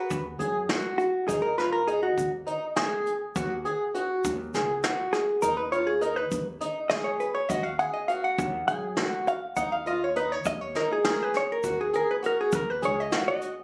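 This brooding, tense progressive instrumental is led by a hollow-body jazz guitar carrying the melody, its dark, clean, compressed tone sitting up front with plate reverb as it solos across the whole 13.6 seconds, ranging from Gb4 to Ab5. Beside it, a fingerpicked twelve-string acoustic guitar spins shimmering, octave-doubled arpeggios with a boxy, fresh-stringed sound, also bathed in plate reverb. The music moves in 7/8 at 203 BPM counted in eighths, settling in Eb minor once the Ebm chord arrives at 2.2 seconds and passing through Ab5/Eb before returning to Ebm at 10.5 seconds. Underneath, a pizzicato upright bass adds a woody, growly low end, while a vintage brush drum kit with a punchy kick, medium-tuned snare and hi-hat keeps a rolled-off, natural feel, and a grainy, bright egg shaker sits close in the mix. Captured on a phone in a club-like room, the fragment carries moderate reverb and a faint mains hum, and it is cut from a longer piece.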